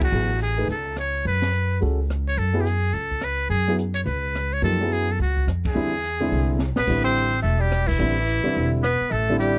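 A muted trumpet opens this cool, searching modal jazz excerpt at a brisk 213 BPM swing, its buzzy, thin tone carrying the melody up front with light vibrato and scooped notes over woody pizzicato upright bass, an intimate upright piano with audible action noise, and an acoustic drum kit with dark cymbals, a high-tuned snare and a boomy kick. The chords move from F#madd9 to E7alt, with band accents at 5.6 and 7.9 seconds and a drum fill at 6.6 seconds. A clear, forceful tenor saxophone enters at 6.8 seconds with a second line as the harmony shifts to Am11, all in a dry, close 1970s-style small-room sound.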